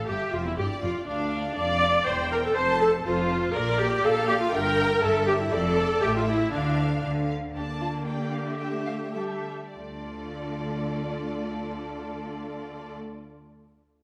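Stormy and dramatic, this quick classical-period movement for string orchestra moves in a straight 2/4 and is cut from a longer piece. Two violin sections carry the upper lines, a melody sitting in the background and a lush second line, both bowed with vibrato and a soft attack. The viola section stands up front with an expressive, distant tone and touches of portamento. Beneath them, a focused cello section and a clear, intense double bass section share the bass, each with a smooth top. The harmony turns through minor and diminished colours before the music slows from 7.0 to 9.7 seconds and settles back on the home chord, all bathed in the reverb of a recital hall.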